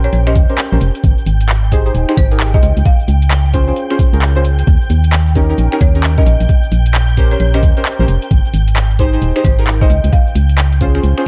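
A swung two-step shuffle at 132 BPM drives this bouncy, late-night UK garage excerpt in Bb dorian, where a hollow, organ-like FM bass sits up front beneath deep, mellow chord stabs with chorus and tape echo, a bright, woody folk marimba melody roughened by 12-bit sampler grit and tape echo, and silky string-machine chords that pump softly in the background through phaser and ensemble chorus, all over a garage kit of cabasa, finger snaps, handclaps and metallic hi-hats, joined at 0.4 s by a gritty, thumpy, overdriven kick in a dark production.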